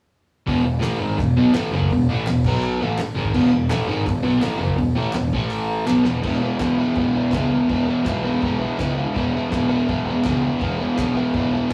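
A straight 4/4 pulse at 166 BPM drives this raw, rowdy garage rock excerpt in E major. A crunchy, double-tracked overdriven guitar riff sits up front, with punchy fuzz bass and a thuddy, cloth-damped drum kit (dark cymbals, fat snare, tight kick) behind it, and crisp group handclaps joining at 0.8 s. The riff moves through E, B5, A5 and E5, and a drum fill at 5.9 s leads into a new section at 6.2 s, all captured as a rough rehearsal-room recording with small-room ambience.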